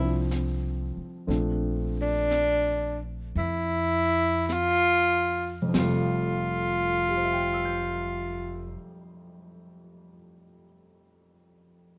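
A tender, late-night jazz ballad in 4/4 and F major, cut from a longer piece, moving at a slow 45-63 BPM with a swung eighth-note feel and slowing down over its first 5.7 seconds. A breathy tenor saxophone carries the melody up front in a soft subtone, staying within a narrow range from D4 to F4 and falling silent at 8.8 seconds. Beneath it, a grand piano spreads its accompaniment from deep in the bass to high in the treble, while a woody, thumpy pizzicato upright bass anchors the low end. A brush kit in a small room adds brushed snare, hi-hat and dark splash cymbal from 0.3 to 6.8 seconds, its high-tuned snare sitting quietly in the mix. The harmony drifts from Fmaj9 to Bbmaj9 and back to Fmaj9, and the piano plays on alone after the others stop, closing at 12.0 seconds. The sound is close and detailed with little reverb, giving the group an intimate, dry presence.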